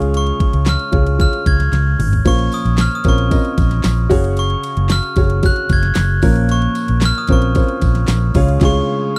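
A dark, woody upright piano, a round, foam-muted electric bass and a layered electronic pop kit with a knocking kick, fat snare and crisp hats open this warm, uplifting piano-driven pop passage at 113 BPM, joined almost at once by a bright, sparkling glockenspiel melody struck with brass mallets, while a drum fill at 1.7 seconds leads to a very quiet, jingly tambourine entering at 2.2 seconds, the harmony moving through Db, Bbmadd9 and Gbsus2 in a dry, close 1970s-style studio sound before a band accent at 8.6 seconds.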